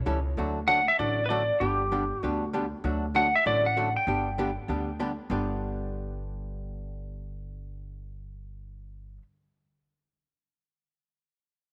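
A swinging, cheerful country and western swing fragment is driven by a thumpy, woody pizzicato upright bass and a hollow-body archtop guitar picked clean, warm and compressed up front, while a dark, clean lap steel played with fingerpicks and slide carries the melody with volume swells from 0.7 to 5.0 seconds over D and G chords in light studio reverb.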